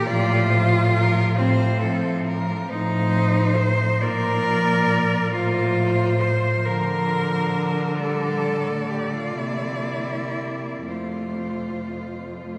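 In 6/8 with a gently stretched, rubato pulse of roughly 38-47 dotted-quarter beats per minute, this tender, serene classical passage for cello ensemble unfolds in F major across about 12.6 seconds, cut from a longer piece. Three bowed, rich-toned cellos carry the upper parts, each a single player with vibrato: the melody sings smoothly in its high register, a focused second line sits up front just beneath it, and a close, even accompaniment moves in the tenor range. A clear, focused bass cello enters at 0.1 s, also up front and bowed with vibrato, grounding the harmony from F2 to D3. The chords drift from F/A to Bb and back, then through Bb/D, G5/D and C7 before settling on F at 10.9 s. Everything sits in a wet, cathedral-like reverb with a long 5.7-second decay, giving the sense of a church or concert hall.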